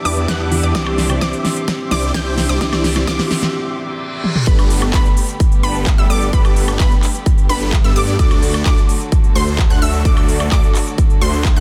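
Euphoric and uplifting, this short cut of festival progressive house runs at 129 BPM in G major, moving from a build-up straight into a drop at 4.5 seconds. The opening leans on a dark, boxy grand piano with digital delay, veiled con sordino strings held in the background, and a very quiet riser and reverse cymbal, while a drum fill rolls underneath before a brief break. Once the drop lands, the piano and effects fall away and the huge, lush supersaw riff with phaser and delay, present since the opening moments, takes the lead over a thick detuned saw bass treated with chorus. High punchy pluck arpeggios glitter above, carrying a filter sweep and ring-modulated edge, and every melodic part pulses with sidechain pumping. The big-room kit brings a massive snare, crisp hats, claps, shaker and woodblock, anchored by an up-front, tape-warm kick that dominates the dense, heavily limited mix as the harmony shifts from Gadd9 to D.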